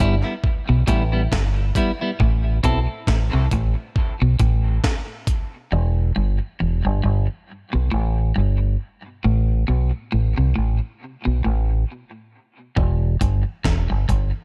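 A deep, fingered electric bass sits up front with a dark, round, punchy tone, anchoring this meditative, hypnotic dub reggae excerpt at 68 BPM with a swung sixteenth feel, moving between E minor and chordless passages. A bright, slightly broken-up electric guitar plays a low twangy riff through dub echo, while a clean, scooped guitar adds brief echoed accompaniment only until 2.8 seconds. A gritty, compressed breakbeat kit with a thumpy kick, high-tuned snare and hi-hat drops out at 5.5 seconds and returns at 12.8 seconds, all in a dry, echo-heavy mix.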